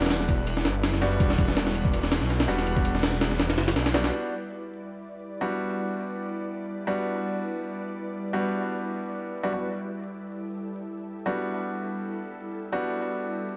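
A gritty, pitched-up breakbeat kit with a thumpy kick and high-tuned snare drives this raw, atmospheric drum and bass cut alongside a thick, menacing detuned saw bass until 4.1 seconds, while warm baby grand piano stabs with dub echo and a mellow, ethereal pad with ensemble chorus float over an opening Em7 chord through to the end, all dusted with vinyl crackle.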